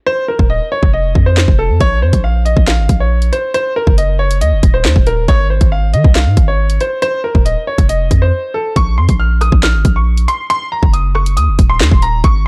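A half-time drill groove in 4/4 drives this tense, dark hip hop fragment: a clear, worn concert grand piano with audible action noise and a low-pass filter carries the melody from 0.1 seconds, over a deep, mellow 808-style bass with long sine tails and an up-front electronic kit of hard-clipped kick, sharp snare, handclaps, rim clicks and warm hi-hats, with a break in the beat until 1.8 seconds and another at 8.3 seconds, all in a dry, dark production.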